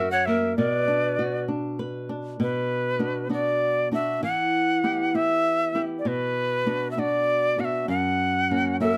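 Andean folk in B minor at a slow 66 BPM in 6/8, this melancholic yet festive fragment sets an airy, close-miked cane quena with vibrato and a crisp chiff up front over a warm, fingerpicked flamenco guitar moving through F#, Bm and Em, while breathy, reedy pan pipes sound a second line only until 1.4 seconds and again from 8.8 seconds, all in a small, moderately reverberant room.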